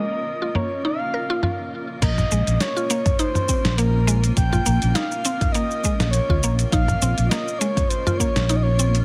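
This hypnotic organic downtempo excerpt opens with a granular cloud pad holding blurred, evolving chords, a woody mallet-like synth pluck spinning arpeggios, and a breathy, flute-like synth lead carrying the melody with chorus, tape echo and vibrato. At 0.6 seconds a gritty, sampler-style drum kit joins up front, its compressed snare, hi-hat, shaker, toms and crash giving a dusty soul character to the lightly swung groove. At 2.0 seconds the arrangement deepens as a dark, round fretless electric bass and an overdriven electronic kick drum arrive, the bass and pad both breathing with sidechain pumping. The pluck's percussive attack and short decay contrast with the pad's slow-blooming, sustained texture and built-in reverb. A filtered digital ambience wraps the whole mix in a soft, enveloping haze over a single minor chord.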